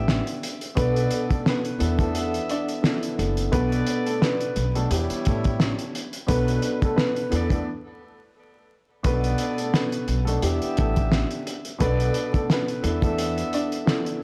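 A dark, mellow grand piano, a jazz-style saxophone section with light vibrato and tape echo, and a woody, thumpy pizzicato upright bass open this reflective, gritty boom-bap hip-hop excerpt at 87 BPM, with a muffled, cloth-damped drum kit of fat snare, tight kick and hi-hat arriving up front at 0.1 seconds with a lightly swung 16th feel. From 0.8 seconds a slightly detuned upright piano with audible action noise carries the melody over a cycling Em7, Bm7 and E7sus4 progression, broken by a short break from 7.7 to 9.0 seconds. The small room sounds dry and saturated, with transformer grit and vinyl crackle, and the bass drops out at 13.4 seconds.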